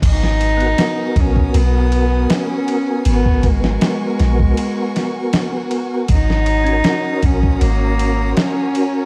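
A brooding, cinematic trip hop fragment in G# minor at 79 BPM opens on a bowed violin section holding soft-attack, vibrato-rich chords over a deep, round 808-style bass and a gritty, thumpy sampler-style drum kit of kick, snare, ride and crash re-recorded in a large room, while a reedy, gut-string solo cello carries the melody through 12-bit sampler grit and tape echo, a mellow tonewheel organ with third-harmonic percussion, chorus vibrato and fast rotary speaker joins at 0.6 seconds, and the G#m7 harmony moves to D#m7/G# at 6.1 seconds under a dark, dry production dusted with vinyl crackle.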